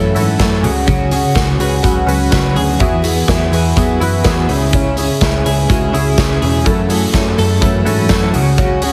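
Bittersweet and wistful, this short excerpt of jangly indie pop moves at 125 BPM in a straight 4/4 through F#m7, C#sus4, Eadd9 and C#m. A shimmering, full-bodied twelve-string acoustic guitar with octave-doubled strings and a touch of finger squeak is picked alongside detuned sawtooth analog keys carrying chorus and a filter sweep. A bright, twangy twelve-string electric guitar plays arpeggios in the background through tremolo and tape echo, over a dark, round, foam-muted picked bass; from 0.2 seconds a big-room rock kit with a punchy kick sits up front beside a jingly, very quiet tambourine, all under light reverb and a heavily compressed, radio-style sheen.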